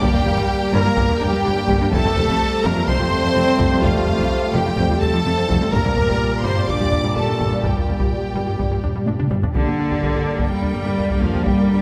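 Drenched in a wet scoring-stage reverb, this vast, tense hybrid orchestral and electronic film cue in G minor at 126 BPM sets a distant, lush symphonic violin melody over a focused studio violin line, intense violas, hollow flute-like pad chords, mellow French horns and close-miked trombones, a driving sawtooth sequenced synth arpeggio, bowed cellos and a smooth double bass section, all propelled by a hard-stick taiko ensemble whose fill at 9.1 seconds pushes into a new section at 9.5 seconds.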